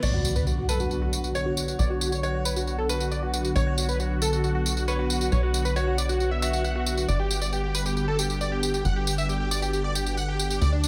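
Lightly reverberant, this cut from a longer uplifting trance piece moves at 136 BPM in a straight 4/4 in B minor, its mood emotional and euphoric. A huge, airy supersaw lead carries the melody through a low-pass filter and delay, detuned and compressed with a noise layer, while a lush, thick unison pad holds sustained chords through chorus and phaser, and both are treated to filter sweeps. A tight, punchy sequencer bass sits up front with a nasal, decaying pluck that drives the low end, joined by electronic crash cymbal and tape-toned tambourine. Behind them, a catchy plucky unison lead with vibrato shares the melody's range through lush chorus, digital delay and its own filter sweep, and a brilliant grand piano with short sustain adds a second line through dub echo until 7.0 seconds. An electronic impact marks the opening 1.8 seconds, and the harmony shifts from Bmadd9 to Gmaj7 at 7.1 seconds.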